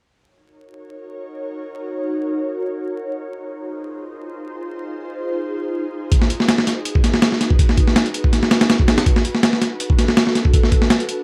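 A dry, gritty hardware recording with vinyl crackle frames this atmospheric, raw drum and bass and jungle excerpt at 163 BPM in Eb minor, tuned slightly flat. An ethereal, airy pad enters at 0.8 seconds, its detuned sawtooth and triangle layers softened by ensemble chorus, phaser and reverb, holding slow-blooming chords that move from Ebm7 through Fm7 and Abm7 to Bm7. At 6.1 seconds a compressed, sampler-style breakbeat kit arrives up front, with a thumpy kick, a medium-tuned snare, hi-hat and a tape-warm small-room character, swinging its sixteenths to the end.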